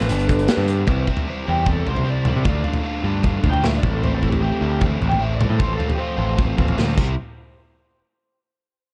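Wistful yet upbeat indie rock at 153 BPM in C major, cut from a longer piece, where a big rock drum kit with bright cymbals and a punchy kick carries a gritty 12-bit sampler edge under a growling, up-front overdriven bass and a bright, double-tracked guitar riff, while a lo-fi lead guitar through a small cranked amp with analog delay takes a solo from 0.9 to 7.2 seconds over chords moving from C through Dm, Am7 and F/A, a mellow tine electric piano flickers briefly in the background near the start, and the whole dry, cassette-tape sound drops away at 7.2 seconds.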